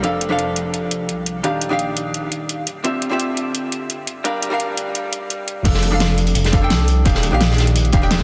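A straight 4/4 groove at 171 BPM drives this dreamy, warm liquid drum and bass passage in F mixolydian, cut from a longer piece. Through the build-up, an up-front, overdriven pop drum kit with a fat snare, metallic hats, rim clicks and crash cymbal sets the pace, while a deep, rumbling detuned saw bass beats underneath and a clean, picked hollow-body jazz guitar with tape echo voices the chords F6, Ebmaj9, Dm11 and Gm7. At 5.7 seconds the drop arrives, adding a punchy, overdriven electronic kick and a gritty, saturated breakbeat kit whose medium-tuned snare and hats have a rolled-off top. The guitar sits up front with a dark, compressed tone, and the bass keeps a sustained, sawtooth growl. A huge ambient reverb with a 5.4-second tail gives the mix a spacious, hazy sheen over a dense, heavily limited master.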